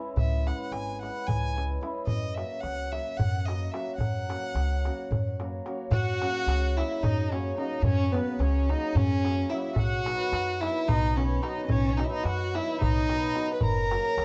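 Balkan folk in the manner of a wedding band, this festive, virtuosic excerpt runs at 219 BPM in a straight 7/8 in F# mixolydian, moving from C#m to F# and later B before returning to F#. A dark, intimate violin carries the melody up front, bowed sul tasto with light vibrato and a soft attack, over a shimmering, ringing hammered dulcimer, a woody, thumpy pizzicato upright bass on gut strings, and a crisp metal-shell darbuka played with soft hands. At 5.9 seconds a reedy, airy accordion joins with a second line marked by slow beating, all set in a dark production with light reverb.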